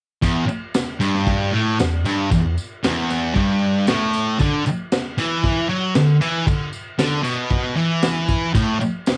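Raw and rowdy, this short garage rock cut at 115 BPM in a straight 4/4 pairs an up-front, double-tracked fuzz guitar riff, bright and thick with cassette-tape grit between E2 and F#3, against a crunchy, saturated breakbeat kit of dark cymbals, high-tuned snare and tight kick, with a jingly tambourine sitting in the background of a lightly reverberant home cassette recording.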